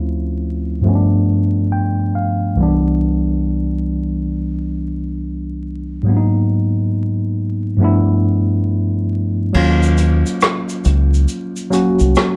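Nostalgic and melancholic, this lo-fi hip hop excerpt at a slow, swung 69 BPM opens with a worn, slightly out-of-tune tine electric piano under a low-pass filter sweep, playing up front through its built-in speakers with a fill at 1.3 seconds over chords moving from Dm7 and G7 to Cmaj7, before a dark-cymbaled vintage brush kit enters at 9.5 seconds with its kick muted, joined at 9.6 seconds by a round, punchy dub electric bass on an Ebm9 chord, all beneath light reverb and vinyl crackle.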